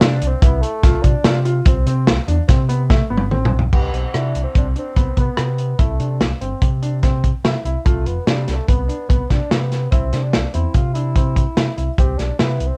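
In a straight, uneven 5/4 pulse, this bright, intricate progressive band excerpt sets a mellow, distant bassoon melody with vibrato over intimate baby grand piano arpeggios with audible action noise, an overdriven, punchy fingered electric bass up front, and a gritty, saturated breakbeat drum kit with dark cymbals, all in light reverb and cassette-tape grain, with a drum fill at 2.9 seconds leading into a second section whose harmony drifts from a third-less Cmaj7 toward Cmaj9.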